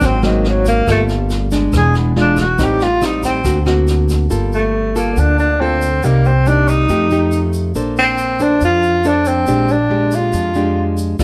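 A light reverb gives this short bossa nova passage an intimate, melancholic glow, with a breathy tenor saxophone up front carrying the melody in a whispered subtone, its mellow, soft-attacked notes scooped and touched with vibrato. A fingerpicked nylon-string guitar supplies warm classical-style accompaniment, while a woody, growly upright bass, played pizzicato, sits close and dark beneath it. A jazz brush drum kit with a boomy kick, rim click and medium-tuned snare adds a rolled-off, small-room pulse at 140 BPM in a straight 4/4, and a grainy tube shaker murmurs far in the background. The saxophone takes a solo over the opening 4.3 seconds across chords such as Ab9, Gm9 and Daug7, and the drums drop away at 4.2 seconds. The second half moves through Cm7 and F9 toward Bbmaj9 and Bb6, and the excerpt is cut from a longer piece.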